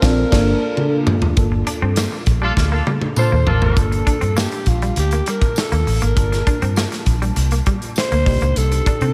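A straight 4/4 groove at 100 BPM drives this polished 1980s jazz-funk pop excerpt in G minor, bittersweet and slick, with a punchy, up-front studio drum kit of kick, snare, hi-hat, toms and crash, and a dark, round, foam-muted fingered electric bass anchoring the low end as the band opens on an accent with a drum fill and a dreamy FM electric piano fill over Gm9. A raspy, gritty alto saxophone carries the melody with vibrato and a slapback echo, while the electric piano with its soft pad layer shimmers through phaser, subtle chorus and slapback echo. A clean semi-hollow guitar riff in lush chorus joins at 1.5 seconds, a jingly tambourine sits in the background from 2.0 seconds, and a clear horn section adds a brief second line from 2.4 to 3.8 seconds before the passage settles onto Cm9.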